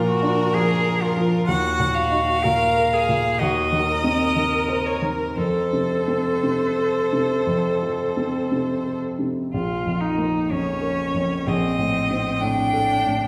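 Violin, cello and piano sound together from the very start of this solemn, melancholic excerpt from a slow romantic piano trio movement in Bb minor, moving in a rubato 4/4 at around 57-65 BPM. The single violin carries the melody with a rich, focused, vibrato-laden bowed tone. The cello's smooth, even line sits up front just beneath it, while the warm grand piano supplies the accompaniment. The harmony passes through Eb minor and F before reaching Bb minor and closing on A diminished over Bb, and the trio sounds as if heard from further back in a reverberant recital hall.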